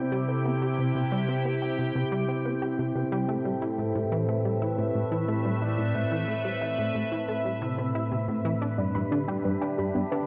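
Soaked in a lush hall reverb with a dreamy cassette-tape haze, this fragment of ambient, sequencer-driven space music drifts at 90 BPM in C major, cosmic and expansive as it moves through C, Amadd9 and G. A bright, evolving pad with chorus and phaser sits up front over a punchy, funky analog bass riff, while a mellow horn-like synth lead with vibrato carries the melody in the background until 7.9 seconds. A breathy, wind-like noise layer enters very quietly at 2.7 seconds, and a soft, round, warbling pluck adds dark arpeggios from 8.6 seconds.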